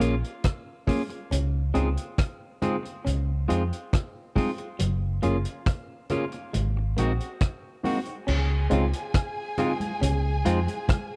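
Lovers rock reggae at 69 BPM in Db major, sweet and smooth in this short excerpt, with a barky tine electric piano carrying the chords over a round, foam-muted vintage bass and an up-front vintage drum kit with a punchy kick and dark cymbals, while a slightly broken-up guitar riff from a small old amp sits in the background, a clean picked guitar adds stabs through spring reverb, distant ringing congas join at 0.9 seconds, and a bowed string section with vibrato and portamento enters at 8.3 seconds, all captured in a dry, close 1970s-style studio sound.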